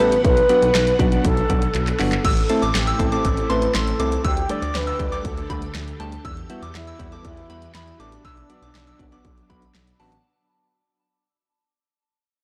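Driving and cool, this synth-pop piece, cut from a longer work and fading out throughout, sets a reedy, distant alto flute melody with tape echo over round electric-piano-like synth keys with chorus and tremolo, a lush vintage string machine in the background, a smooth, nasal synth bass and an up-front house drum kit with punchy kick and snare that plays a fill at 1.7 seconds, while a soft FM synth bell with phaser and tape echo enters at 2.2 seconds, the sound blown-out and overdriven with light reverb.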